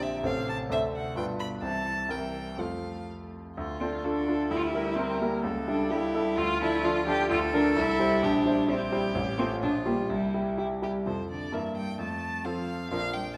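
Lively and cheerful, this quick classical-period movement for piano trio moves at 129 BPM in 2/4, its F major brightness turning to D minor at 3.6 seconds and back at 7.3 seconds, with a smooth, vibrato-rich violin carrying the melody and a similarly even, bowed cello singing a second line from a distance, while an up-front concert grand with brilliant highs and deep bass supplies the accompaniment in a moderate scoring-stage reverb.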